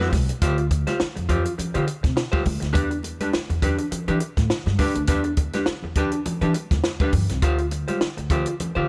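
Funk at 103 BPM in 4/4 with a 56% sixteenth-note swing, this short D dorian excerpt is cut from a longer piece and carries a driving, sly mood. A vintage hollow-body jazz guitar sits up front, playing clean, picked accompaniment between D4 and C5 with a dark, electric tone. Beneath it, a pizzicato upright bass with steel strings gives a woody, shadowy low end from C2 to E3. A compact cocktail drum kit, recorded in a tight booth and placed up front, pairs a high-tuned snare with a punchy kick and hi-hat, while congas with soft hands and a ringing, medium-tuned voice sit in the background with a live-room sound. The harmony moves from Dm7 to Em7 at 2.8 seconds and returns to Dm7 at 7.4 seconds, all within a small room ambience.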